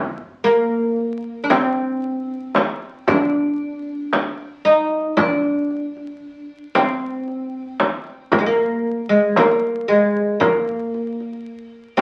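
Hypnotic and longing, this 12-second cut from a longer Arabic maqam ensemble piece moves in a straight 10/8, with a bright, woody, plectrum-plucked fretless oud carrying the melody up front from 0.4 s, a deep clay-shell darbuka struck with hard hands joining at 0.5 s, and a vintage, band-limited frame drum entering at 1.5 s, all heard through a wet studio reverb and the crackle of a very old 78 rpm record.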